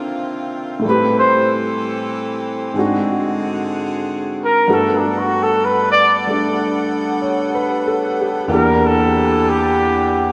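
Swung eighths in a slow 4/4 carry this wistful, intimate jazz ballad, heard as a short cut from a longer piece. A concert grand piano provides the accompaniment from the first moment, its deep bass, long sustain and audible action noise placed up front. A bright saxophone section holds sustained chords alongside it, punchy and touched with light vibrato. At 0.9 seconds a mellow trumpet enters with the melody, its soft attack sounding both roomy and distant while still sitting forward as the solo voice. The harmony drifts from Cm11 through Am7 and Ab7#11 to a lingering Gmaj9 before settling on Em7b5 near the close. A wet church reverb with a long tail surrounds the ensemble, giving the recording the air of a large hall.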